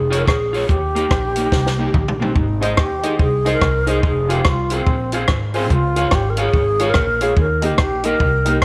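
A bouncy, joyful ska groove at 144 BPM in 4/4, swung on the eighth notes, drives this short excerpt cut from a longer piece. The compact cocktail drum kit sits up front with a dry, natural sound, a high-tuned snare and a tight kick, working hi-hat, rim click and toms, and it plays a fill from 1.5 to 2.4 seconds. Beneath it the pizzicato upright bass is woody and thumpy, its gut strings giving a dark, up-front low end. An airy alto flute carries the melody with vibrato, a crisp attack and lifted highs, its expressive line touched by slapback echo. A fingered electric guitar at the edge of break-up adds dark, slightly broken-up accompaniment, also with slapback echo, while a warm upright piano enters at 2.6 seconds with short-sustain stabs in the background. The chords move from Db through Eb, Ab and Fm, all set in light reverb and studio ambience.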